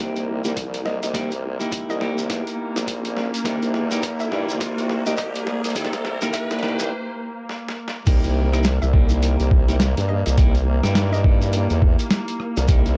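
Swaggering and funky, this glitch hop excerpt moves at 104 BPM in C minor with a swung sixteenth-note feel, built on a single C7#9 chord and a dark, lightly reverberant production. A thumpy, pitched-down electronic kick sits up front, joined by a gritty boom bap sampler kit with a medium-tuned snare, rim clicks, hi-hats and crash, tape-warmed and re-recorded in a small room, while a grainy, band-limited shekere adds texture in the background. The formant-sweep wobble bass, blending sawtooth and sine tones with chorus and overdrive, wobbles prominently beneath clean, picked electric guitar stabs that pump with the sidechain and trail tape echo. Veiled, muted strings hold sustained chords at a distance through vintage 12-bit sampler grit, and a woody, wave-folded pluck with a noise layer and filter sweep drifts in the background from 0.9 seconds. A build-up with drum fills and an electronic riser from 0.7 to 6.9 seconds gives way to a short break, and the drop lands at 8.1 seconds.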